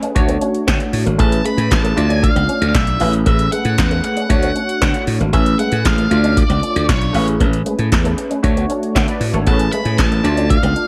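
A straight 4/4 pulse at 116 BPM drives this feel-good, danceable slice of early-eighties boogie funk, cut from a longer piece. An electro analog drum machine sits up front with a deep kick, punchy snare, metallic hats and handclaps, the snare, clap and hats dressed in a short gated reverb. A glassy slap bass enters at 0.2 seconds, bright, growly and direct, while a detuned polysynth comps with plucky sawtooth and square-wave tones, ring modulation and a mellow chorus sheen. Tucked in the background, a dark, clean electric guitar plays a fingered riff through an envelope filter and ensemble chorus. From 1.2 seconds an octave-fuzz lead guitar carries the melody high above, its picked notes thick with distortion, as the harmony cycles through Dmaj7, Amaj9 and Dm in a dry mix.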